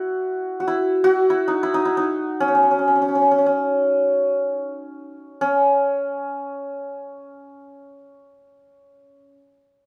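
A wet studio reverb with a short 0.6-second tail surrounds this brief, live-in-one-room recording of Indian classical music. A solo santur sits up front, its bright, shimmering, hammered strings ringing through a narrow span from C#4 to F#4 across the full 9.3 seconds. The mood is meditative and full of longing, with the phrase shifting into a new section at 5.4 seconds.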